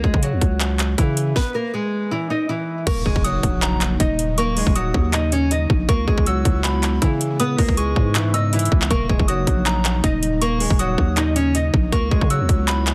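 Brooding and dark, this trap-style hip hop excerpt in Eb phrygian moves at 159 BPM with a half-time feel, built on a fingerpicked nylon-string guitar melody sitting up front over a growling, buzzy 808-style bass and an overdriven trap kit with hard-clipped kick, sharp snare, metallic hi-hats, handclaps and crash. After a stop from 1.4 to 2.9 seconds, a very quiet electronic impact marks the arrival of a soft, warbling FM synth bell with chorus and delay and an airy, breathy pad with chorus holding mellow chords in the background, as the harmony alternates between Ebm7 and Dbm7. The mix is dense and heavily limited with little reverb, keeping the guitar and drums close and present.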